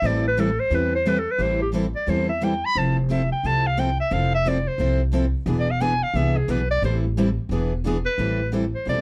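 Swung eighths in 4/4 drive this bittersweet yet fiery snippet of jazz manouche, where a breathy, subtone clarinet solos up front with light vibrato over a woody, thumpy pizzicato upright bass, one bright picked steel-string guitar with finger squeak and a second, mellower picked guitar in the background, all through light reverb and dark production as the harmony moves from Am7 through Fmaj7 and E7 to close on Am9 at 8.2 seconds.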